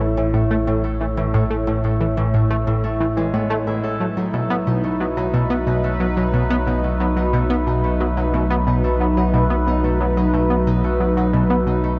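A steady, straight 4/4 pulse drives this luminous, cosmic piece of sequencer-led space music, taken from a longer work. Up front, a tight sequenced synth repeats a driving riff in a detuned blend of sawtooth and pulse wave, its filter plucked with a fast attack and thickened by chorus and delay before it drops out at 11.8 seconds. Beneath it, a round analog bass holds the low end with a deep, dark tone of sawtooth and sine laced with ring modulation. A sweeping, resonant pad fades in across the whole passage, its evolving layers of sawtooth, triangle, sine and a sub octave opening through a slow filter swell into bright, chorused sustained chords. A ringing, fingerpicked concert harp spins acoustic arpeggios through delay as the harmony moves from A to B at 4.0 seconds, and an immense, wet reverb with a 7.6-second tail bathes the mix in a vast sense of space.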